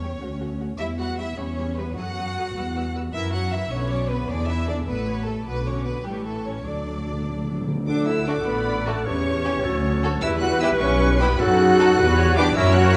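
A spirited, cheerful classical-period orchestral passage in D major and a brisk 6/8 at 102 BPM opens on strings: a dark, woody violin section carries the high melody over a focused second violin line, lush violas, smooth cellos and an up-front double bass section. Timpani played with medium mallets add a short fill at 6.7 seconds. At 7.9 seconds the opening phrase returns with winds: an airy flute ensemble with lifted highs, oboe and a very quiet, shadowy clarinet share the second line, a mellow bassoon accompanies, and a distant French horn section holds soft chords, all in a moderate concert-hall reverb.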